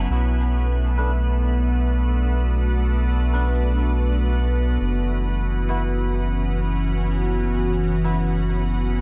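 Ambient music at 102 BPM in 4/4 with a straight feel, set in B minor and tuned slightly low, this short excerpt from a longer piece feels spacious and hazy. A soft, organ-like pad holds sustained chords from the start, its pure, calm tone given a slow attack, long release, ensemble chorus and its own reverb, sitting bright and up front. Beneath it, a deep, round dub sub bass plays in the low register throughout, fast in attack and thickened by tube saturation. A clean, twangy electric guitar enters at 1.0 seconds with picked stabs in the background, shaded by subtle chorus, a low-pass filter and dub echo, before stopping at 8.2 seconds. The harmony moves from Bm7 to F#7sus4 at 4.8 seconds, all within a light reverb and small room ambience.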